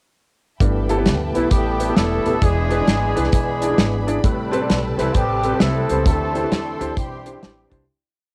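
A driving two-beat praise groove from a tight, up-front soul drum kit and a woody pizzicato upright bass, walking and running with slides and chromatic approach notes, propels this uplifting, hopeful uptempo gospel piece at 132 BPM with a swung feel in G major, where a clear grand piano plays off-beat close-voiced chords, a fat, lightly overdriven tonewheel organ with key click, chorus vibrato and a slow rotary speaker holds chords in the background beside a lush, dark bowed string pad, and an up-front horn section enters at 1.3 seconds with octave-doubled hook phrases, the piano, organ, strings and horns carrying cassette-tape grit within light reverb before a fade-out beginning at 6.1 seconds.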